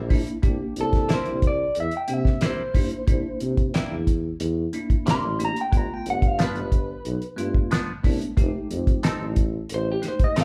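A mellow tuba opens this gritty, laid-back cut of straight-eighth soul blues at 91 BPM in C mixolydian, its scooped, vibrato-laden bass notes roomy yet up front, joined almost at once by a cloth-damped, thuddy drum kit with a fat snare and tight kick and by a bell-like tine electric piano, before an electric guitar through a small old amp takes the slightly broken-up melody from 0.8 seconds and a twangy, direct-recorded clean guitar adds phaser-tinged stabs from 1.1 seconds, the band playing live in one room with light reverb over C7, G7 and F7 chords.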